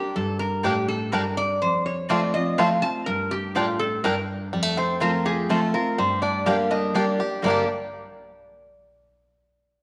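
Bluegrass in 3/4 at 124 BPM and G minor, driving yet lonesome, cut from a longer piece and moving between Gm and F. A metallic, nasal lap resonator guitar played with slide and fingerpicks carries the melody up front over a picked dreadnought steel-string with fresh strings, while a twangy, percussive fingerpicked banjo adds arpeggios from 0.7 seconds and a bright, woody mandolin sits in the background with stabs from 0.6 seconds. The studio sound is wet with echo chamber reverb and carries a faint mains hum.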